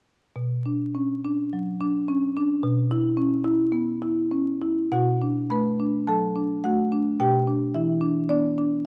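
Uneven, rubato beats at about 105 BPM in 4/4 give this reflective, hypnotic contemporary classical piece for solo marimba, cut from a longer work in B minor and tuned to A4 = 436 Hz, a drifting pulse. The marimba, played with medium hard mallets on padauk bars, sits up front with a woody, dark and smooth yet percussive tone spanning B2 to B5, moving through Bmadd9 and E5/B before a new section at 4.9 s brings Bm7 and Em7/B. Close, detailed microphones catch the instrument in a moderate recital hall reverb, with vinyl crackle beneath it.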